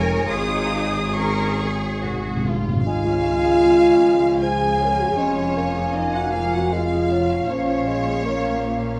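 Tender and lyrical, this romantic orchestral excerpt in triple time unfolds with rubato as rich violins carry the melody in the background over a lush second violin line, a very quiet viola accompaniment, close cellos and distant double basses, while a dark, punchy tuba supports the bass only until 2.6 seconds. A hard-mallet timpani fill, close and dry, arrives at 2.0 seconds, and from 2.9 seconds a pure silver flute adds a second line, a mellow bassoon joins the accompaniment and a close-miked French horn section holds sustained chords with light vibrato. The orchestra sits in the wet reverb of a recital hall.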